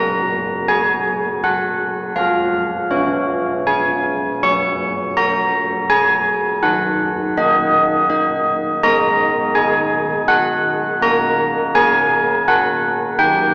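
In a straight triple metre at 82 BPM, this classical tune for church bells moves at an unhurried, stately pace, its mood both festive and serene. A set of old church bells plays alone for the full 13.5 seconds, ranging from D#3 up to C#6 and sitting up front in the mix. Their bronze tone is clangorous, with the clank of an iron clapper, a prominent minor-third overtone, and a beating shimmer as the strikes ring on. The harmony drifts between unharmonized passages and chords such as C#7/E#, D#m and G#5, tuned slightly high to A4 = 441 Hz. A wet church reverb lets each stroke hang for about 3.9 seconds, though the overall sound has the narrow character of a small speaker. The passage is cut from a longer piece.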